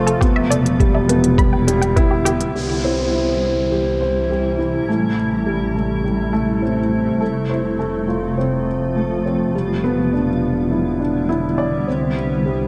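A dark, mellow baby grand piano riff, up front with audible action noise and digital delay, runs through this cinematic, hypnotic piano-and-strings electronica excerpt at 103 BPM over a blurred, evolving granular cloud pad and a veiled, muted bowed double bass section, both pumping with sidechain. A lush, detuned sawtooth pluck arpeggio, a compressed, thumpy kick and crisp, overdriven hi-hats fill only the first 2.5 s, and an electronic downlifter sounds from 2.6 s, all set in a moderate concert hall reverb.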